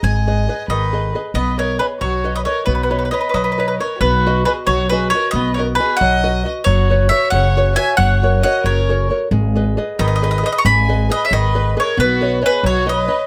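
A lilting 6/8 sway at 90 dotted-quarter beats carries this passionate, wistful Italian folk serenade in B major, where a bright, double-strung bowl-back mandolin sings the melody up front with plate reverb, a distant, smooth violin with vibrato traces a second line beneath it, a fingerpicked nylon-string guitar with finger squeak supplies small, warm accompaniment, and a woody, thumpy pizzicato upright bass anchors the low end until 13.1 seconds, all in a light reverb as the chords move from G#m through Badd9, B and F#sus4 in this excerpt from a longer piece.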